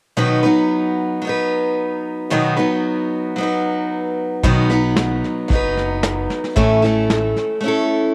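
A picked steel-string acoustic guitar opens this short, easygoing honky-tonk and classic country excerpt, sounding bright and up front with fresh strings and a touch of finger squeak, and it carries the accompaniment from 0.2 seconds to the end at 8.1 seconds. The tune sits in B mixolydian at a relaxed, sunny 113 BPM in a straight 4/4, moving from a B chord to an A chord at 6.6 seconds. At 4.4 seconds a soft brush drum kit joins with hi-hat, a tight kick and a medium-tuned snare, its tone dark and smooth and tinged by cassette tape like the guitar. An upright bass arrives at the same moment, its pizzicato gut strings sounding woody and thumpy low in the mix. The home cassette recording carries light reverb and a small room ambience, giving the fragment a cozy, homespun character.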